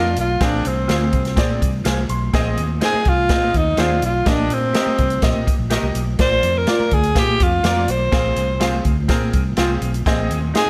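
A breathy tenor saxophone carries the melody up front, its whispered, intimate tone and light vibrato floating over this joyful, uptempo 1960s-style soul excerpt at 124 BPM in a straight 4/4. A bright, slightly detuned upright piano with a woody, worn character fills in the accompaniment, while a fingered electric bass holds the low end with a dark, round tone. A big-band drum kit joins at 0.2 s with hi-hat, a punchy kick and a medium-tuned snare, sounding airy and polished. Further back, an electric guitar through a small old amp adds lo-fi, slightly broken-up stabs coloured by lush chorus and slapback echo. The harmony sits over a Bb bass, moving through Fm/Bb, Ab/Bb, Eb/Bb and Bb, all wrapped in light reverb and tuned to A4 = 442 Hz.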